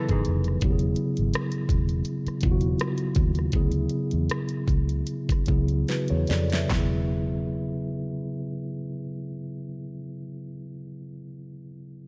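A mellow, clean tine electric piano sits up front through its built-in speakers, carrying Amaj9, Eadd9 and Dmaj9 chords in this soulful, sensual neo-soul R&B excerpt in E major, lightly swung at 71-84 BPM and slowing from 0.6 seconds. A dark hollow-body jazz guitar adds a brief fingered phrase at the very start, while a round, foam-muted vintage electric bass sits beneath and a layered electronic pop kit of knocking kick, fat snare, hi-hat, rim click and handclaps plays a fill at 5.9 seconds before stopping at 6.9 seconds. Light reverb and digital ambience surround the parts, with audible lossy compression artefacts.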